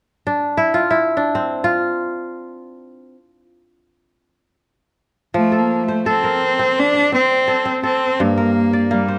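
In free time, this joyful West African traditional passage opens with a crisp, ringing, fingerpicked kora playing arpeggios alone from 0.3 seconds, until at 5.4 seconds a single bowed cello, warm and smooth-topped with vibrato, joins up front with a focused melody over F and then G minor harmony, both instruments caught by close, detailed microphones in a moderate recital-hall reverb.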